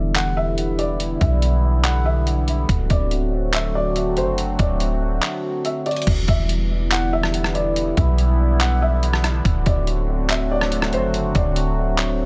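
A dry, close-sounding mix carries this melancholic, spacious excerpt of atmospheric cloud-rap, moving in a half-time feel. A sweeping, resonant pad built from sawtooth and triangle waves, wave-folded and treated with chorus and phaser, holds sustained chords up front throughout, slowly evolving over a harmony that alternates between Em7 and D7. Beneath it sits a soft 808-style bass, deep, round and sine-like, its notes striking quickly and then decaying in the low register. A felt-muted upright piano carries the melody in a high, intimate register, its mellow tone further softened by a low-pass filter and trailed by tape echo. The trip hop sampler-style drum kit sounds pitched down and gritty, with crash cymbal, handclaps, hi-hat, rim click and a thumpy kick, and the kick drops out from 5.2 to 6.1 seconds before the second section begins.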